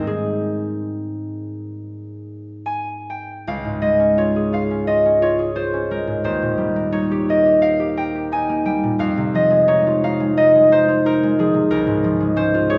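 Dreamy and serene, this short classical passage cut from a longer piece features a solo concert harp, fingerpicked and ringing, spanning Db2 to Ab5 at a flexible rubato pace between 64 and 92 BPM in 4/4, tuned to A4 = 441 Hz. Its warm, acoustic tone sits up front yet is heard from further back in a wet recital hall, whose 1.4-second reverb lends a soft halo. The harmony moves from Ab to Db at 3.5 seconds, then through Eb and Fm7 before settling back on Db near 11.7 seconds.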